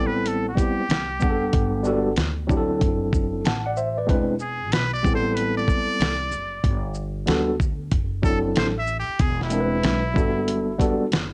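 A swung 94 BPM groove in 4/4 from a gritty, compressed soul sampler-style drum kit with thumpy kick, fat snare, hi-hat and shaker, entering at 0.3 s with 12-bit grit and cassette tape coloring, drives this relaxed jazz-hop piece in G major, where a woody pizzicato upright bass holds the low end beneath a worn, slightly out-of-tune tine electric piano with light overdrive and plate reverb, while a nasal, breathy straight-muted trumpet, also on cassette tape, solos with vibrato, soft attacks and scooped notes over Am9, Gmaj9, D9/F# and E7b13 changes.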